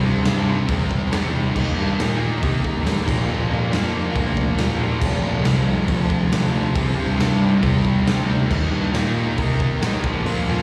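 Heard like a live gig through the venue's PA, this short cut from a longer piece sounds raw and close, with only a little room reverb around it. It is swaggering garage rock for a duo or trio at 138 BPM in a straight 4/4, cycling through C, Eb, Bb and F. A thick, double-tracked fuzz guitar sits up front with a bright, distorted riff running from 0.0 to 10.6 seconds, joined by a growly, overdriven fuzz bass that plays picked lines from the very start. The raw acoustic drum kit comes in at 0.2 seconds, gritty and saturated with a punchy kick, a medium-tuned snare, hi-hat and crash, all in a pumping stone room with a rolled-off top. Beneath them, a vintage combo organ holds very quiet, mellow sustained chords, clean but bathed in heavy vibrato.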